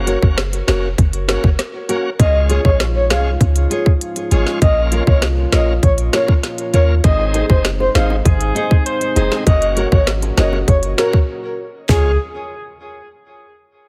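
Tight, woody island-pop drums and a deep, boomy 808-style bass drive this bouncy, sunny dancehall excerpt, joined by a fingerpicked nylon-string guitar with delay and a bright, lightly overdriven tonewheel organ on fast rotary speaker, while a breathy, flute-like synth lead and a mellow background brass ensemble with sidechain pumping arrive at 2.2 seconds, soft high-tuned bongos at 7.0 seconds and a punchy horn section with delay at 8.3 seconds, all in a heavily compressed, radio-like mix with light small-room reverb.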